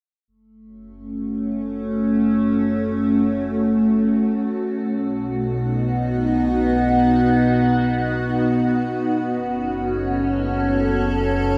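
Ambient, sequencer-driven space music, this short cut from a longer piece feels expansive and hypnotic as it floats in free time. A fat, saturated analog bass fades in from 0.3 s, its detuned sawtooth and square-wave tone sounding thick and nasal as it holds low, sustained notes beneath everything. At 1.1 s an evolving wavetable pad arrives up front, morphing through slow-attack, long-release chords with a unison triangle character coloured by chorus, phaser and a shimmer reverb. The harmony moves from F# minor to B and back to F# minor at 9.1 s, giving the stillness a gentle sense of return. A huge, wet ambient space with a long reverb tail wraps the whole sound, and the bass sits well beneath the pad in level.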